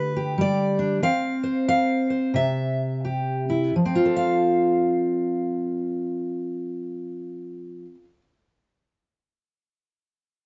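Nostalgic and gentle, this short folk excerpt features a lone fingerpicked steel-string acoustic guitar, bright and full-bodied with the sound of a dreadnought, sitting up front and catching a finger squeak. It has a lilting swing and eases off in pace over the first 3.8 seconds, moving from G over D through a chordless passage to C before settling on F. Moderate studio reverb surrounds the guitar in a dark, warm production, and the clip is cut from a longer piece.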